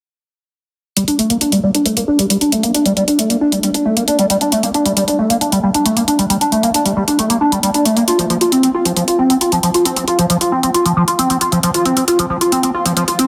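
A straight 4/4 pulse at 135 BPM drives this bittersweet, euphoric slice of uplifting trance in G minor, cut from a longer piece, with an overdriven, layered electronic hi-hat sitting up front from 1.0 to 13.3 seconds. Over the same span, a squelchy, resonant square-wave acid bass plays arpeggios between F3 and F4, colored by phaser, chorus, cassette tape and tape echo, while a filter sweep runs across its whole length. The sound is dense and heavily limited, set in a wet hall reverb with a 2.2-second tail.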